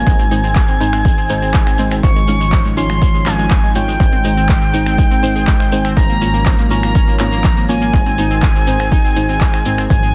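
An up-front, punchy electronic kick drives this uplifting, euphoric progressive house passage, cut from a longer piece in a straight 4/4 feel. Over it, an expressive, smooth synth lead with vibrato, chorus and tape echo carries the melody high in the mix, shadowed by a very quiet soft supersaw playing a second line far above. A plucky, funky analog bass with sidechain pumping holds the root beneath a thick, warbling unison pad that sustains the chords, while a bright, detuned analog pluck spins arpeggios through chorus and digital delay. A dark, deep mellow chord stab with subtle chorus and delay sits in the background, joined by a deep house kit of smooth hats, finger snaps and handclaps and a grainy shekere. The harmony circles around Ab, moving through Dbadd9/Ab at 2.0 seconds and Bbm/Ab at 6.0 seconds, all in a dry, dense, heavily limited modern master.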